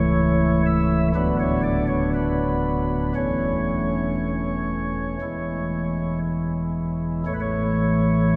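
Serene and reverent, this brief classical chorale-style fragment for solo pipe organ moves at a rubato 59 BPM in A major, its soft, warm flute stops with baroque voicing and a tremulant sitting up front while a cathedral reverb of 5.1 seconds carries the chords from A/C# through Bm/D and E before settling on A at 7.3 seconds.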